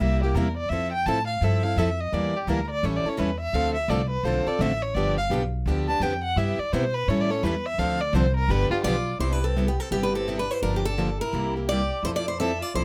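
Close, detailed microphones and a light reverb give this short cut from a longer jazz manouche piece an intimate, present sound, playful and charming at a brisk 170 BPM in 4/4 with a swung eighth-note feel in C major. A warm, bowed violin with smooth vibrato carries a solo over the first 9.2 seconds, moving through a turnaround of seventh chords from C7 through Fmaj7, Dm7 and G7. Underneath, a boxy parlour-style plugged-in steel-string guitar with fresh strings keeps the accompaniment up, joined by a second accompanying steel-string guitar with a concert body that sits further back in the mix. A woody, thumpy upright bass with gut strings is plucked up front, giving the bottom a dark pulse. At 8.8 seconds a bright, picked parlour guitar takes up the melody, carrying into the second section as the harmony shifts through Cmaj7, Gm7 and C7 before landing on Fmaj7.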